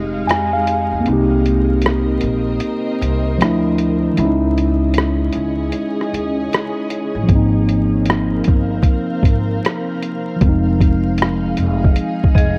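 This lo-fi hip hop fragment drifts along at 77 BPM in 4/4 with a swung sixteenth feel in Ab major, and its mood is dreamy and nostalgic. A mellow, clean tine electric piano carries the accompaniment up front, softened by a low-pass filter, while a woody, growly pizzicato upright bass sits beside it. A muffled, compressed sampler-style drum kit with a thumpy kick, hi-hat and rim click comes in at 0.3 seconds, during an opening break that lasts until 7.3 seconds. Behind them, a blurred, evolving granular cloud pad holds sustained chords with a slow attack, long release and its own reverb. The harmony moves from Fm7 through Cm7, Dmadd9 and Dbmadd9 to Ab69 before returning to Fm7, and a dark, ringing vibraphone struck with hard mallets adds a second line at 12.3 seconds. The whole mix carries light reverb, worn cassette-tape character with warbly pitch drift, and vinyl crackle.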